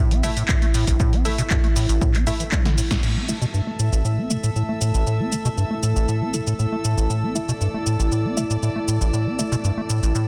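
A rubbery, saturated acid bass riff opens this raw, gritty acid house excerpt in A minor at 118 BPM, its resonant square-wave tone pushed up front with a filter sweep and a cassette-tape grit, pumping against a dark, detuned sawtooth pad that sits in the background with chorus. Almost at once a punchy analog drum machine joins with cabasa, hi-hat, handclaps and a punchy snare in a short room, while a muted, evolving dub chord stab drifts behind through chorus and tape echo. A punchy electronic kick drives the opening from 0.5 to 3.0 seconds, ending with a drum fill and a band accent just before the second section. At 3.0 seconds a soft, floating string section enters, distant and bowed, as the pad takes its own filter sweep and the bass sweep continues. The sound is dense and heavily limited, with light digital reverb around it.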